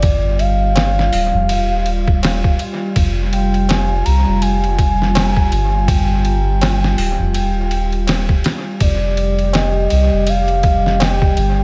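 A swung 4/4 groove at 82 BPM anchors this melancholic, dark trip hop excerpt in F dorian, its sampler-style drum kit sitting up front with a thumpy kick, medium-tuned snare, hi-hat and ride cymbal that sound compressed, pitched down and gritty, all thrown into dub echo. A low-tuned acoustic tabla with a short ring sits in the background in a small room, also caught in dub echo, and drops out at 11.2 s. Beneath them, a deep, round dub sub bass with a fast attack holds sustained notes up front. A nostalgic, lo-fi pad of detuned sawtooth and triangle tones warbles through chorus and its own reverb, sustaining mellow chords that move from G5 to Eb and Fm before returning to G5 and ending on F5. Over this, a pure, breathy sine lead glides with vibrato, its vintage tone colored by cassette tape processing and tape echo. Light digital ambience wraps the echo-heavy mix.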